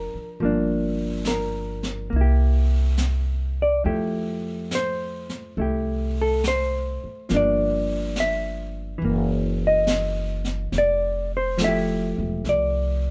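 A clean, dark hollow-body electric guitar, fingered and up front, accompanies this tender, late-night swung jazz ballad fragment through Gm7, C7 and Fmaj9 with a Gb6 arriving at 9.0 seconds, over woody pizzicato upright bass and a distant, roomy brushed drum kit with a high-tuned snare that enters at 0.4 seconds, the band heard together in one room with light reverb.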